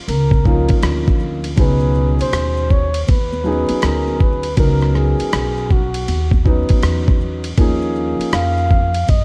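A cool, smoky jazz-hop groove at 80 BPM opens with a breathy, bucket-muted trumpet melody, woody pizzicato upright bass, a gritty, compressed sampler-style drum kit with a thumpy kick, hi-hat, ride and rim clicks, and very quiet congas and maracas, all swung on the sixteenths. A mellow, boxy grand piano enters at 0.4 s with long-sustaining chords over Eb7sus2, Db9sus4 and Eb9sus4, while the veiled trumpet scoops into its notes in an intimate, whispered tone. Studio reverb, vinyl crackle and a dark production frame this short hip hop excerpt.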